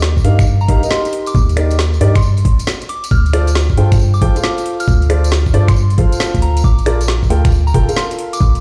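This bouncy, skippy two-step UK garage excerpt opens at once with a hollow, organ-like FM bass sitting up front with tube saturation, a garage drum kit of finger snaps, metallic hats and a woody snare roughened by overdrive, and a jingly acoustic tambourine tucked in the background. At 0.2 seconds a knocking, overdriven electronic kick drum arrives alongside dark, mellow baby grand piano stabs trailed by dub echo. By 0.6 seconds a soft, pure synth bell carries the melody high above, its gentle, vintage tone warbling through chorus and tape echo. At 136 BPM in 4/4, the 16ths swing at 66%, giving the groove its skip, while the harmony moves from Eb to Dm7 and then Bbmaj7. The mix carries little reverb, with the feel of a big sound system playing in a bare room and a large studio reverb.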